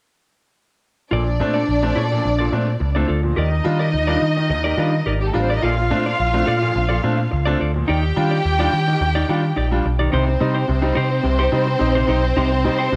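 Disco with a joyful, celebratory mood, this excerpt sets a round, punchy picked electric bass up front beside a lush, woody string section carrying the second line, while a clear grand piano with short sustain and a clean, hollow-bodied semi-hollow electric guitar fill out the accompaniment over a Bbmaj7 to Ebmaj7 progression that turns to Cm at 10.1 seconds, all in a small room with light reverb.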